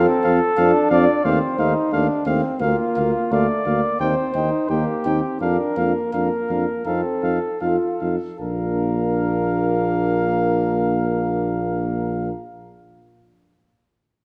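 Noble and triumphant, this rubato classical brass quintet passage, cut from a longer piece, sets a warm cornet melody above a smooth-topped flugelhorn second line, with a clear, close-miked trombone and a close-miked French horn in the background and a mellow, lightly vibrato bass trombone up front yet distant and roomy, slowing down from 1.2 to 8.4 seconds before arriving on a Bb chord in the moderate reverb of a concert hall.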